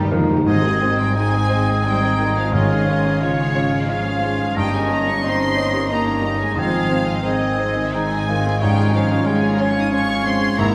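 Bathed in a wet scoring-stage reverb, this passionate, lyrical romantic excerpt in a rubato 3/4 opens with a hard-mallet timpani fill as a worn baby grand piano and a lush, vibrato-rich violin section carry the melody. A pure, high flute and a smooth second violin section weave second lines, joined from 0.5 s by a warm oboe and a dark, very quiet clarinet, while focused violas and, from 1.2 s, a mellow bassoon fill in the accompaniment. A tight French horn section holds sustained chords, and distant cellos and clear double basses anchor the bass.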